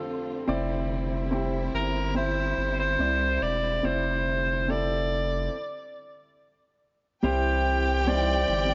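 A breathy, whispered alto saxophone carries the intimate, jazz-tinged melody from 1.7 seconds in this tender, heartfelt pop ballad excerpt at 71 BPM in 4/4, over a dark, mellow concert grand piano, a thick, saturated sub bass up front and a warm string section with expressive portamento sitting distantly in the background, all moving from Cadd9 to C through a stop at 5.5 seconds before a rich, focused violin section adds a lush second line at 7.2 seconds, the whole set in a small room's ambience.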